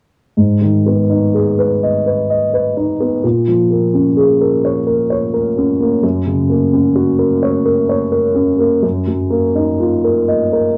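Longing and fragile, this brief classical fragment in a rubato 6/8 features a dark, woody upright piano sitting up front with a cassette-tape character, moving through G#m, A#m7, F# and D#madd9/F# in a small, home-recorded room from 0.4 to 10.8 seconds.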